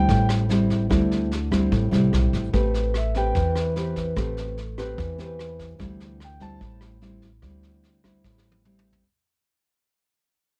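This bossa nova fragment moves at a relaxed, breezy 147 BPM in a straight 4/4, tuned slightly low to A4 = 438 Hz, and it fades out across its full length as it is cut from a longer piece. A fingerpicked nylon-string guitar sits up front, its classical tone marked by audible finger squeak as it carries the accompaniment through D9sus4 and Am9 chords. Beneath it, a woody pizzicato upright bass anchors the low end. A vintage brush kit with a punchy kick, rim clicks and a rolled-off top keeps time from a small room, and it plays a drum fill beginning at 8.2 seconds. Soloing in brief, high phrases, a natural-sounding grand piano floats through plate reverb, while the whole mix carries a dark, warm production with light reverb.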